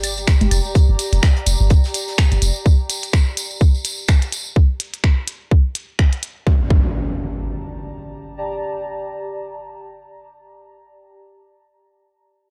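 Dry, gritty and cassette-taped, this cool, quirky minimal techno cut in G minor at 126 BPM with a swung 16th feel opens on an impact and a brief tape-echoed burst of analog claves and congas, as a tight, up-front electronic kick, a deep sine sub bass with a pitch-drop attack and sidechain pumping, finger snaps and clicky hats from a minimal click kit, a jingly tambourine and a very quiet, damped acoustic 70s kit with a fat snare gather beneath a warbling, nostalgic, detuned pad that fades and pumps through chorus and its own reverb, until the sub drop and impact return at 6.5 seconds.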